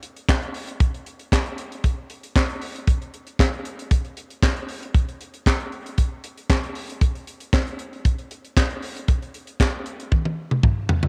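Late-night and funky, this short funk cut from a longer piece runs at 116 BPM in a straight 4/4, carried entirely by a tight acoustic drum kit of kick, snare, hi-hat, toms and handclaps. The kit sits up front, dry, airy and polished with a high-tuned snare and a tight kick, colored by cassette tape and set in a moderate spring reverb that frames this home cassette recording. A drum fill closes the passage from 10.1 to 11.1 seconds.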